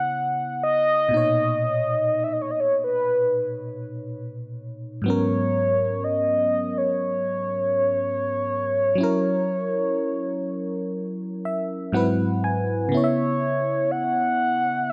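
A mellow, horn-like synth lead carries the melody up front, its round, full-bodied sawtooth tone sustained with vibrato, chorus and digital delay over a slow 61 BPM R&B groove in C# dorian with a moody, late-night feel. Beneath it, a glassy FM electric piano with a bell-like attack and vintage warble plays the accompaniment through rich chords such as C#m9, Bmaj9 and G#m11, adding a fill from 11.0 to 12.9 seconds before the passage settles on C#m7. Light reverb wraps this short cut from a longer piece.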